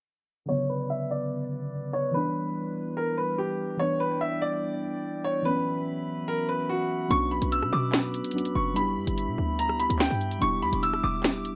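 A brilliant, woody upright piano melody with tape echo opens at 0.5 seconds over muted, chorused felt-like synth keys and ethereal, glassy harmonica chords, all three low-pass filtered while a filter sweep runs until 7.1 seconds, when a punchy, tight 808-style bass and an up-front drill kit of sharp snare, bright hats, rim clicks and handclaps arrive, turning this cold, menacing B minor hip hop cut into a 145 BPM half-time drill groove around Bmadd9, Em7 and G6 chords, with a dark production and light reverb.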